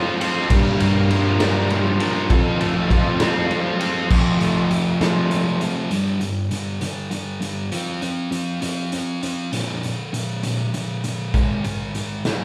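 A roomy, live-in-one-space sound with a moderate large studio reverb frames this bittersweet, restless indie rock, moving at 66 BPM in a straight 6/8. Up front, a thick fuzz guitar riffs throughout beside a bright, crunchy overdriven guitar and a punchy fuzz fingered bass, while a raw garage drum kit with a dark, rolled-off top, medium-tuned snare and punchy kick drives along with crash and ride. A very quiet, gritty tonewheel organ holds sustained chords through a slow rotary speaker until 4.1 seconds, and once the bass and crunchy guitar drop out at 5.9 seconds, the fuzz guitar and drums carry the rest on their own.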